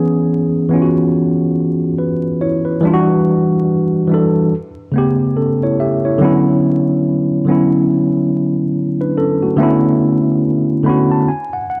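A 71 BPM hip hop swing in 4/4 carries this dreamy, nostalgic excerpt, where a lone worn, slightly out-of-tune tine electric piano sits up front with cassette-tape coloring, moving through C#m7, Em9, A9 and Dmaj13 across a range from C#3 to B5 before a fill at 10.4 seconds, all within a dark production with light reverb and vinyl crackle.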